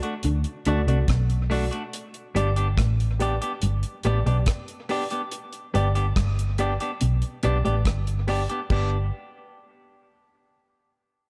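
A straight 4/4 roots reggae groove at 71 BPM in G major, cut from a longer piece, rides on a dry, up-front drum kit with a tight kick, hi-hat, rim click and crash, under a round, foam-muted fingered bass that sits prominently in the mix. A clean, picked electric guitar treated with spring reverb and dub echo plays accompaniment while a dark grand piano adds short stabs, and a mellow fingered electric guitar riff lurks in the background. The harmony moves from D to G at 1.9 seconds, giving the warm, uplifting mood a gentle lift in a lightly reverberant room.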